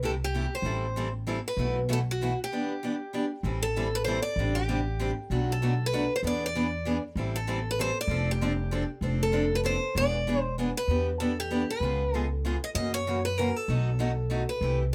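A picked steel-string acoustic guitar carries the melody up front, its fresh strings sounding bright and boxy with an audible finger squeak, in this fiery, virtuosic stretch of acoustic string swing in the jazz manouche tradition. A second picked steel-string guitar plays accompaniment, sharing that parlour-sized, boxy character, while an upright bass with gut strings gives a woody, dark, thumpy pizzicato foundation close to the listener. The music moves in a swung three-beat metre, passing through a short opening passage, a longer middle stretch from 3.4 seconds, and a return to the opening material at 10.9 seconds. A break arrives around 2.5 seconds, and the harmony runs through rich seventh and suspended chords before closing on a chain of dominant sevenths. Close, detailed microphones and a light reverb keep the trio intimate and present, and the passage is cut from a longer piece.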